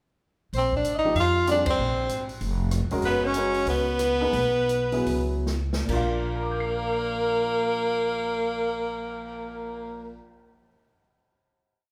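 A short, hypnotic and searching modal jazz piece in Bb mixolydian opens at 0.5 seconds with a bright, close-miked alto saxophone doubling at the octave, woody pizzicato upright bass in a two-feel, and a dark-cymbaled drum kit keeping time on the hi-hat, joined by a clear, up-front tenor saxophone carrying a scooped, motif-based melody and a warm upright piano comping in quartal voicings, swinging at 134-192 BPM with a band accent at 1.6 seconds, slowing from 3.0 seconds into a drum fill before settling on a final Bb chord at 5.9 seconds, all bathed in a wet recital-hall reverb.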